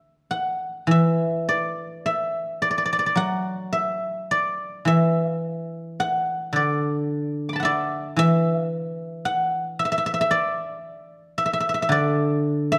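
A solo guzheng, played with fingerpicks, opens the recording at 0.0 s and carries it alone until it ends at 12.8 s. This is a short passage of Chinese traditional music, taken from a longer piece, with a serene, pastoral mood. The pace is slow and free, following a loose rubato feel within a 4/4 frame, and the instrument ranges from D3 up to D6. Its acoustic tone is mellow and silvery, with a ringing sustain, and it sits up front in the mix. A moderate recital hall reverb surrounds it, and the overall production leans dark.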